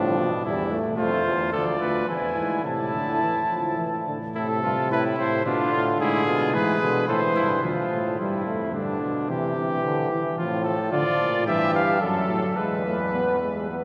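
This lively, elegant classical canzona for brass ensemble opens with a trumpet on the second line, played up front with light vibrato, a trombone on accompaniment and a euphonium carrying the bass, all in an imitative style at 109 BPM in 3/4 and A minor. At 1.0 seconds a second trumpet enters with the melody, reaching up to A5. The trumpets and the close-miked trombone share a warm tone, while the euphonium sounds clear, with a touch of vibrato of its own. The melody trumpet pauses at 7.6 seconds as the opening idea returns, and it comes back at 10.9 seconds over harmony that moves from B-flat through F-sharp minor to E. A cathedral reverb with a long 6.2-second decay surrounds the ensemble, and the passage is cut from a longer piece.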